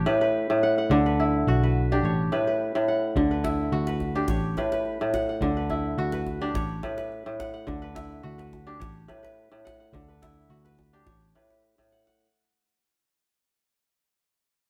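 West African traditional string music in a flowing, warm mood, cut from a longer piece and carried by a steady, straight 4/4 pulse. A fingerpicked kora sits up front, spinning ringing, crisp arpeggios across its full span from the start to 13.0 seconds. Beneath it, a picked electric bass gives a dark, round, foam-muted tone through an amp, holding the low end until 11.3 seconds. A medium-tuned djembe, close and dry, joins at 3.2 seconds and closes with a short drum fill at 11.8 seconds as the fade reaches its end. The harmony rocks between A and D throughout, and the band plays live together in a stone room with moderate reverb, while the whole passage fades out across its length.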